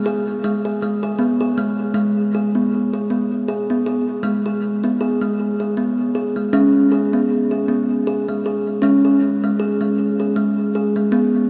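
A hypnotic, meditative world piece at 78 BPM in a lilting, lightly swung 3/4, built on a solo kalimba whose woody, ringing thumbnail plucks sit up front in G# minor pentatonic, washed in diffuse ambient delay and a vast cathedral reverb with a cassette-tape grain, moving from G#m to C#5 at 6.5 seconds in this 11.5-second excerpt of a longer piece.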